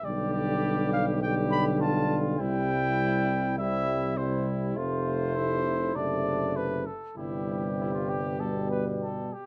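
Stately and triumphant, this classical brass quintet excerpt moves at 101 BPM in 4/4 with a slightly uneven pulse, settling in C major over a progression that closes on G. A mellow trumpet carries the melody up front while a second mellow trumpet, distant and roomy with light vibrato, sings a supporting line until 9.5 seconds. A clear French horn and a dark euphonium, the latter set back in the background, fill the accompaniment, and a warm tuba with light vibrato anchors the bass, all within a dark production and light reverb.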